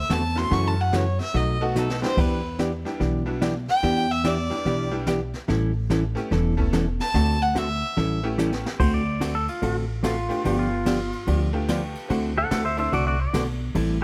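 Playful and down-home, this western swing excerpt opens with a biting, nasal fiddle solo played with light vibrato and an airy bow, carrying the lead until about 8.2 seconds. At 8.8 seconds a twangy, fingerpicked pedal steel guitar takes over with volume swells and slide. Underneath, a woody, growly pizzicato upright bass and a dark, clean hollow-body jazz guitar sit up front, a jangly tack piano adds metallic sparkle, and a brushed jazz kit with a high-tuned snare, boomy kick and dark cymbals plays two short fills in a small, natural-sounding room with light reverb.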